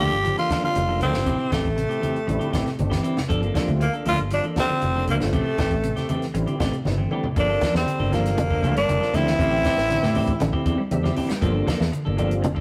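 Afrobeat at 118 BPM in G dorian, hypnotic and driving, cycling between Gm9 and Am7 as a raspy, gritty tenor saxophone leads up front with scooped notes and vibrato, over a fingered electric bass, a compact cocktail kit with a high-tuned snare and punchy kick, quiet low-tuned congas, and two clean picked electric guitars, one playing arpeggios and the other stabs with a warbly pitch drift. A fat, percussive tonewheel organ with key click, slow rotary speaker and chorus vibrato sits in the background, and a very quiet trombone with light vibrato adds a second line from 7.4 seconds, just after a drum fill, until the saxophone stops at 10.7 seconds, when the organ takes a short fill. The rough rehearsal-room recording has a moderate stone room reverb, and this is cut from a longer piece.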